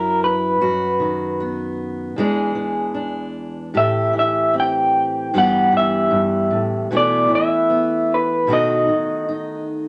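A straight 4/4 pulse at 76 BPM carries this intimate, heartbroken acoustic folk-pop ballad in E minor, cut from a longer piece. A fingerpicked steel-string acoustic guitar, warm and up front, lays down the accompaniment through a chord path from B/F# and E7 to Am7, Em/G and a closing B7sus4 to B7. Above it, an electric guitar played through a small old amp carries the melody with a dark, slightly broken-up, compressed lo-fi tone and a tremolo shimmer, set in a wet studio reverb.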